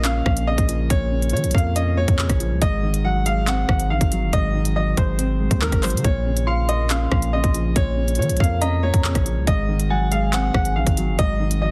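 An up-front electronic drill kit with a hard-clipped kick, crisp hats, handclaps and rim clicks drives this cold, ominous half-time hip hop drill excerpt at 140 BPM in Bb minor, over a deep, long-sustained sine 808 bass, a clear, woody upright piano melody and a dark, boxy concert grand accompaniment with audible action noise, while an eerie, warbling FM synth bell with chorus and digital delay enters in the background at 6.5 s, set in a dense, heavily limited modern master with little reverb.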